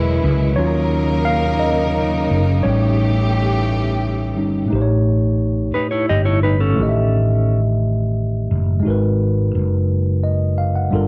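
A worn, slightly out-of-tune tine electric piano carries this short slice of slow, late-night R&B, taking a clean, direct solo up front over the first 4.7 seconds. It moves in a sultry 6/8 at 58 BPM with a straight feel, through E13, D#m7 and A7#11 before settling on G#m7 at 8.8 seconds. Beneath it, a dark, round fretless electric bass sits punchy and forward, its amped tone touched with subtle chorus. A lush, bowed studio string section holds smooth, vibrato-rich chords at the start before dropping out. A dark, fingered electric guitar adds a brief clean second line with tremolo from 5.7 seconds. Light reverb and digital ambience surround the parts, with a faint mains hum in the background.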